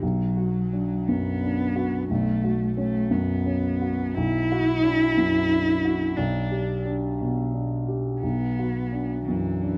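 A single bowed cello, woody and played sul tasto with vibrato, carries a close, up-front second line through this reflective, fragile neoclassical excerpt, heard for its full 9.8 seconds. A dark grand piano, mellow and equally present, accompanies it in a rubato 6/8. The harmony moves from Bm to F#sus4/B, back to Bm, then to G/B before settling on Bm, all inside a light reverb.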